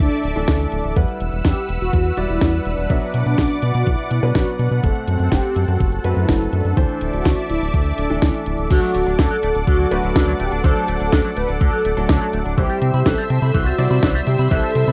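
A nostalgic, melodramatic italo disco excerpt opens with a thumpy, sampler-style electronic kick and a layered house kit of cracking snare, metallic hats and crash cymbal, under a deep, up-front analog bass, boxy baby grand piano stabs and a smooth, warbling pad with chorus. A brassy, detuned synth brass carries the melody through chorus, cassette tape and tape echo. After a band accent at 8.2 seconds, a bright, twangy electric guitar with an envelope filter enters at 8.7 seconds, picking arpeggios through tape echo, all set in a dry, close 1970s-style studio sound.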